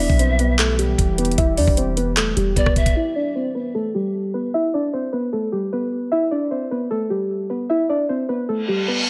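Muted, felt-like synth keys carry the melody through this eerie, melancholic trap fragment in E minor, a dark, chorused line with digital delay. For the opening seconds, a breathy, reedy pan flute adds a distant second line, a warbling, detuned ambient pad holds deep chords in the background, a boomy 808-style bass sits beneath, and a trap kit with knocking kick, metallic hi-hats, handclaps and rim clicks drives a half-time feel at 152 BPM. Once these parts stop around 3.0 s, the keys continue alone under a filter sweep until a reverse cymbal arrives at 8.6 s, all in a lightly reverberant space.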